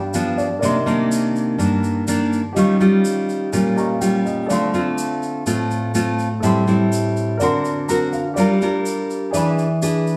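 A bright, full-bodied fingerpicked nylon-string guitar sits up front with fresh strings and audible finger squeak in this intimate, smooth bossa nova fragment at 124 BPM, joined by a natural-sounding baby grand piano with short sustain that adds brief fills at 0.0, 3.5 and 7.6 seconds, and a grainy, mellow tube shaker from 0.1 seconds, all set in a large studio with a wet reverb, moving through jazzy chords like G7, Cm9 and Daug7.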